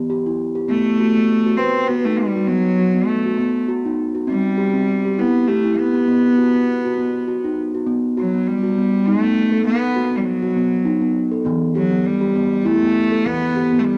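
Meditative and gentle, this short world-music piece, cut from a longer work, moves at 100 BPM in 3/4 with a light swing on the sixteenths, set in B phrygian dominant and tuned slightly low. A steel tongue drum opens at 0.0 s with ringing arpeggios struck with firm rubber mallets, its tone round, pure and bright, sitting up front. At 0.7 s a single bowed cello enters with the melody, earthy and biting yet smooth at the top, and it stays close to the drum in level. The harmony circles around E minor, B and C before settling on a bare B5 chord at 7.9 s, where the second section begins, and it returns to E minor near the close. Both parts carry cassette tape colour and plate reverb, with analog delay trailing the cello. The whole is placed in a small, reverberant home room recorded on cassette, giving it an intimate, lived-in feel.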